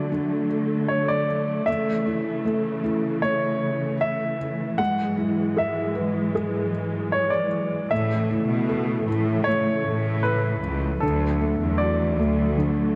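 A clear, polished baby grand piano carries the melody up front in this heartfelt, hopeful pop excerpt in A major, moving at a gentle 77 BPM in a straight 4/4. Beneath it, a felt-muted upright piano plays soft, intimate accompaniment with audible action noise from its thick felt, while a dark studio string section holds sustained chords with a woody, sul tasto vibrato. At 7.9 s a rich symphonic cello section enters on the bass line, its smooth, even bowing adding depth until 12.7 s. The chords move from D through A and Eadd9/G# before settling back on A and returning to D. A moderate lush hall reverb and a dark, warm production give the brief fragment, cut from a longer piece, an enveloping, tender glow.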